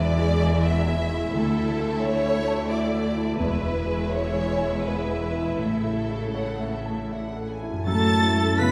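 A moving, sorrowful cinematic film score in 3/4 and A major drifts with rubato at 76-90 BPM, opening on lush bowed strings: a clear, intense violin melody ranging up to B6, a focused second violin line, smooth viola and rich cello and double bass in the background, over open, deep-bassed grand piano and a very quiet, mellow, ringing harp's arpeggios, all set back in a reverberant scoring stage before an airy flute, a distant oboe and a roomy French horn section join at 7.9 seconds on an F#m7 chord in this short excerpt.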